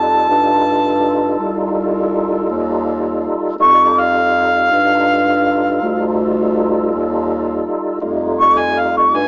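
Heard through light reverb and a small-speaker sound, this gritty, laid-back slow blues in 12/8 has a straight feel and is cut from a longer piece. An overdriven harmonica takes the solo up front, soft and warm, with light vibrato, scooped notes and a jazz touch. A fat tonewheel organ with key click, chorus vibrato and a slow rotary speaker holds sustained chords, while a dark, breathy, close-miked bass clarinet carries the bass line with light vibrato and scooped notes.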